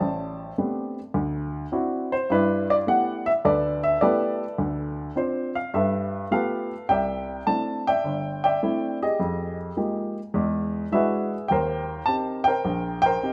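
Relaxed and sophisticated, this short solo jazz passage, cut from a longer piece, swings gently at 104 BPM in 4/4 and sits in G major. A dark baby grand piano carries everything alone from 0.0 to 13.3 s, ranging from G1 up to A5 with a mellow, intimate tone, short sustain and audible action noise that keeps it natural and up front. The harmony moves through rich extended chords, opening on Am11, D9 and G69 before Dm7 and G9 lead into a second section at 6.9 s. That later stretch shifts colour with C69, Fm11 and E9 before settling on Eb6. A moderate echo-chamber reverb gives the piano a soft halo of space around its close, mellow sound.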